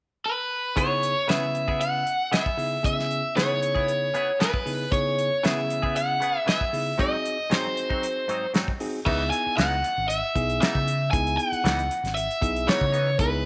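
A straight-eighth 4/4 groove drives this soulful, mournful soul blues, cut from a longer piece. An overdriven electric guitar carries the melody up front from 0.3 seconds, its picked tone warm, and a damped 70s drum kit follows with a dry, fat snare, a tight kick and dark cymbals. Beneath it a bell-like tine electric piano supplies clean accompaniment, while a twangy, compressed clean electric guitar, recorded direct, adds picked stabs colored by analog chorus. The harmony moves from C#m7 to G#7, and at 9.1 seconds a round, punchy fingered electric bass enters as the chords settle on C#m9. A moderate echo chamber reverb with small room ambience surrounds the band.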